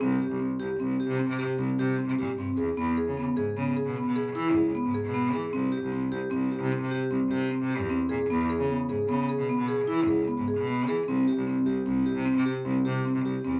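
Set in a straight, uneven seven-beat metre, this restless and playful contemporary chamber excerpt pairs a mellow, ringing vibraphone played with soft mallets and motor vibrato, spinning arpeggios up front, with a single biting, nasal bowed cello carrying the bass line beneath, all in a wet studio reverb as the harmony alternates between C5 and E.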